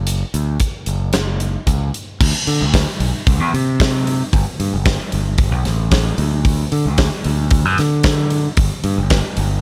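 A growling, overdriven fingered electric bass sits up front in this dry, anthemic slice of quiet-loud alternative rock, cut from a longer piece. A big acoustic rock kit with a fat snare, tight kick, hi-hat and crash cymbal shares the foreground, its sound carrying a big-room character. The pair open in half time before shifting into a new, cathartic section at 2.2 seconds.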